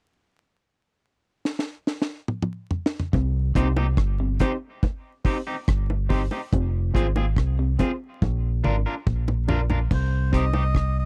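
Dry and close with vinyl crackle, this roots reggae excerpt in C minor moves at a serious, laid-back 71 BPM, opening on a deep drum kit with a high-tuned snare and tight kick that rolls through fills at 1.4 and 8.2 seconds. At 3.1 seconds a dark, round fingered bass arrives up front with low-tuned bongos and a lo-fi, compressed guitar playing arpeggios through spring reverb in the background, soon joined by a twangy guitar at the edge of break-up carrying dub echo and a barky, reedy electric piano punching stabs through overdrive and fast tremolo over Cm, Fm and Bb. At 9.9 seconds a breathy, nasal melodica takes a brief melody with dub echo as the chord returns to Cm.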